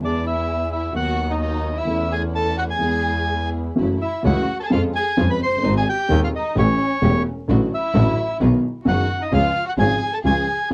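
Melancholic and passionate, this tango excerpt moves at 130 BPM in 4/4 with a rubato feel, its reedy, vintage bandoneon carrying the melody up front while a lush violin section plays a soft-attack second line beneath it. A mellow baby grand piano with audible action noise supplies accompaniment in the background, a very quiet, dark string section adds bowed stabs, and an earthy bowed double bass with light vibrato anchors the low end. The dry, close 1970s-style studio sound carries vinyl crackle, and the harmony travels from E at the start to a C# chord at 9.3 seconds.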